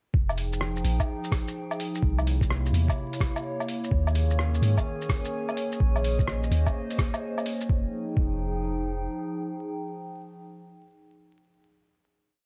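Future garage with a nocturnal, rainy mood, this short piece moves in a swung 4/4 over a dark chord cycle that returns to its opening chord for a held final chord from 7.7 seconds. A muffled, thumpy electronic kick sits up front in a two-step pattern, while a pitched-down, lo-fi sampler-style kit adds a skittering, shuffled beat of shaker, hi-hat, woodblock and rim click, both in a small room. Beneath them, a deep, round 808-style bass plays a dub-style line that pumps with the sidechain. A warbling, nostalgic tape-like pad of detuned square and triangle tones holds sustained chords through to the end, pumping and washed in chorus and reverb. From 4.2 seconds, a glassy texture of drifting overtones holds a calm high note in the background. Vinyl crackle and light digital ambience frame the whole recording.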